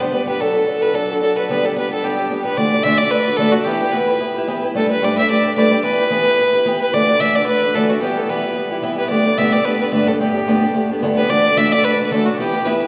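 A warm, nasal fiddle with light vibrato carries a smooth, even melody up front in this cheerful, rollicking Celtic reel at 220 BPM with a swung feel, joined throughout by a boxy, picked old ladder-braced acoustic guitar moving through chords like D/F#, G, Em and Dadd9, all set in a wet concert hall reverb that lingers for 2.2 seconds in this short cut from a longer piece.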